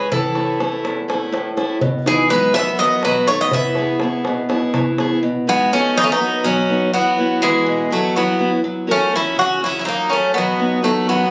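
Two metallic, double-strung bouzoukis open this bright, energetic stretch of Greek folk in 7/8, one carrying the melody up front while the other plays a softer second line beneath it, alongside a boxy, fresh-stringed picked archtop guitar whose finger squeaks can be heard. A clay-shelled darbuka with a natural skin adds earthy percussion until 5.2 s, after which the strings carry on through the chords. Captured on a phone in a club with compression and light reverb, it has the lively, close feel of a band playing in the room.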